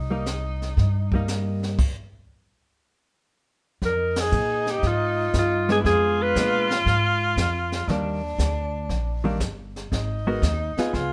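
This smoky small-group swing piece in C minor opens with a mellow, distant tenor saxophone and a woody, thumpy upright bass, soon joined by a clean, compressed hollow-body guitar and a brushed kit with dark cymbals, a high-tuned snare and a punchy kick, all swinging at 118 BPM. The guitar drops out at 1.8 seconds. Then a vintage-toned alto saxophone with light vibrato, subtone and scooped notes carries the melody up front from 3.9 to 6.7 seconds, with a band accent just after it enters, over changes from Fm7 through Bb7b9 and Ebmaj7 to Abm9 in a lightly reverberant room.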